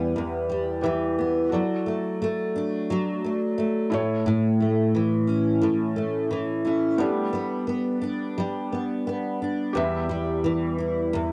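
A full-bodied, double-tracked steel-string acoustic guitar sits up front, its picked dreadnought tone carrying this carefree, heartfelt acoustic pop excerpt at 87 BPM in D major, moving through Em, D/F#, A and Gadd9. Beneath it, a felt-muted upright piano adds mellow, intimate accompaniment with audible action noise, both parts playing together across all 11.3 seconds. A small, moderate room reverb and the cassette home-recording character give the sound a close, warm homemade feel.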